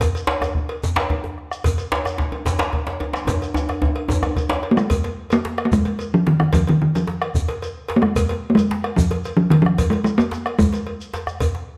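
A straight 12/8 pulse at 148 BPM drives this earthy, powerful passage of West African traditional drumming, where a round, close bombo, a metallic cowbell, a grainy, compressed shekere and a tight, cracking djembe with metal rattles sitting in the background hold the groove, while a second, deep djembe plays up front from 0.3 s until 4.6 s, through a drum fill that begins at 3.3 s, and at 4.7 s a short-ringing talking drum takes up the melody between Eb3 and Bb3, heard in a moderate recital-hall reverb.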